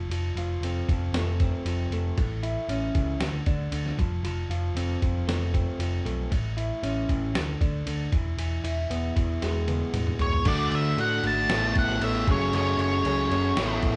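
Quiet-loud alternative rock in A major at 116 BPM, restless and anthemic, this excerpt opens with slightly broken-up arpeggios on an electric guitar through a small old amp, a growly, punchy overdriven bass and a muffled, thumpy sampler-style drum kit, then during a drum fill a dark octave-fuzz lead melody enters at 10.2 seconds and a bright, compressed fuzz guitar riff joins in the background at 10.5 seconds as the chords move from D to Aadd9 and F#madd9, all heard in one room with light reverb.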